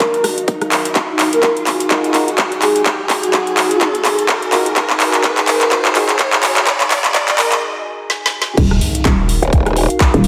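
Swaggering and bouncy, this bass house excerpt moves at 126 BPM in Eb minor with a swung sixteenth-note feel, built around an Ebmadd9 chord. A breathy, flute-like synth lead carries the melody with soft vibrato, chorus and dub echo until 7.6 seconds, while a deep, moody analog pad holds sustained chords underneath, its detuned tone colored by chorus and phaser and pumping against the sidechain. A tight, layered electronic kick and an up-front garage kit with a woody snare, metallic hats, handclaps, rim clicks and crash cymbal drive a build-up full of drum fills, with a percussive, organ-like stab sitting darkly in the background from 1.9 to 6.1 seconds under a filter sweep. A background riser climbs toward a short break, and at 8.6 seconds the drop lands with an impact as a hollow, knocking FM bass punches in up front. A saturated, growling bass with a wobbling formant-filtered bite flashes through briefly near the end, all set in a lush hall reverb.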